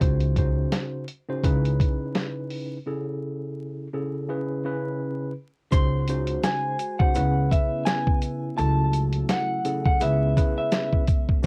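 Swung sixteenths give this gritty, dark boom-bap hip-hop cut its loping groove, as a dusty, compressed sampler-style drum kit with a thumpy kick sits up front beside a woody pizzicato upright bass and a worn, slightly out-of-tune tine electric piano, captured as a home cassette recording with vinyl crackle and light reverb, until at 5.7 s a dark, clean electric guitar melody with tape echo arrives alongside a soft, flute-like tonewheel organ through a slow rotary speaker and a grainy tube shaker in the background.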